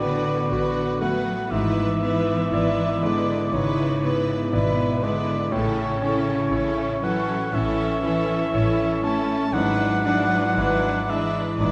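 Bathed in recital-hall reverb, this passionate, lyrical excerpt from a romantic classical movement in A major unfolds at a rubato 60 BPM, with an up-front grand piano of clear, long-sustaining tone carrying the melody alongside focused violins, while an airy, hollow flute, a mellow close-miked cor anglais and a background clarinet weave second lines over very quiet, lush second violins, distant violas, rich cellos with expressive portamento and smooth double basses, and hard-mallet timpani sound barely audible for the first 1.0 s.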